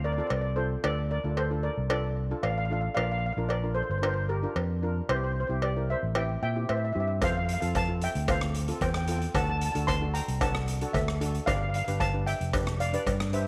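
A carefree, bouncy calypso excerpt in F major at 113 BPM opens with a dark, smooth lead steel pan carrying the melody up front over a punchy, amped fingered electric bass, joined almost at once by a shimmering double-seconds steel pan in a boxy small room and a close, metallic cowbell, until a polished, airy street-band drum kit with a boomy kick, hi-hat and rim click enters at 7.2 seconds as the chords move from F through Dm, Bb, C and D to G7, all set in light reverb and small room ambience.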